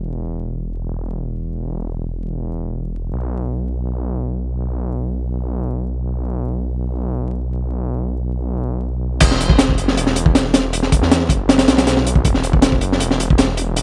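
Dark and raw, this jungle-tinged drum and bass excerpt opens with a thick, menacing detuned saw bass whose beating tones sit up front alone until the drop at 9.2 seconds, when a crunchy, saturated acoustic breakbeat kit enters with a high-tuned snare, tight kick, hi-hat and crash cymbal, its gritty sound carrying a rolled-off top, all in a dry mix dusted with vinyl crackle.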